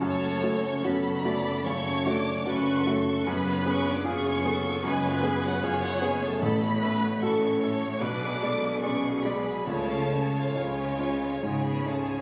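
Over a slow, rubato 75 BPM pulse in 4/4, this passionate, tragic romantic movement in F# minor sets an intimate, up-front grand piano with audible action noise against a violin section singing the melody with portamento, a second violin line in the background, a focused, lush viola accompaniment, mellow horn chords, and a cello and double bass bass line, while a very quiet timpani enters at 9.7 seconds on the closing C# chord, all heard as if captured on a phone in a reverberant hall in this brief excerpt cut from a longer piece.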